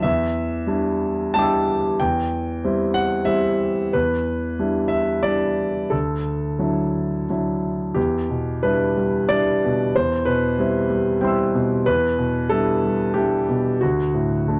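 A rubato 3/4 pulse at 92 BPM carries this wistful, intimate neoclassical minimalist piano excerpt in E minor, where a solo grand piano, smooth, vintage-toned and up front, spans D2 to E6 over Em7, C/E and Dadd9 harmonies that shift to include Cmaj7/E after 8.0 seconds, all heard in the dry, close sound of a small room in a 1970s-style studio.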